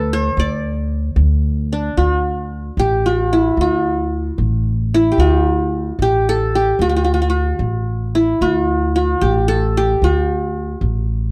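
A qanun and an upright bass sound together from the opening moment of this passionate, festive Arabic maqam ensemble passage, cut from a longer piece. It is set in D maqam rast at 75 BPM in a straight 6/8. The plectrum-plucked qanun carries the melody between D4 and D5, its triple strings giving a bright-edged shimmer that sits up front. Beneath it, the pizzicato upright bass holds the low end between A1 and D2 with a woody, warm tone and steel strings, also placed close to the listener. A brief opening phrase gives way at 2.0 seconds to a longer passage that continues until the cut at 11.3 seconds, all framed by light reverb in a dark, warm production.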